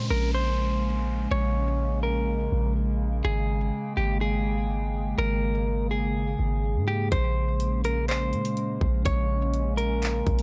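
A half-time feel anchors this hazy, ethereal stretch of atmospheric cloud-rap, cut from a longer piece, with a deep, boomy 808-style bass up front under a warbly, nostalgic tape-like pad that sways between Bbm9 and Absus2 through chorus, built-in reverb and sidechain pumping. A dark, clean semi-hollow electric guitar carries the melody up front through tape echo, while an electronic downlifter drifts through the opening until 3.2 s. At 7.1 s a trap drum kit arrives with a hard-clipped kick, metallic hi-hats and handclaps, all set in a digital ambience with a dry, gritty hardware character.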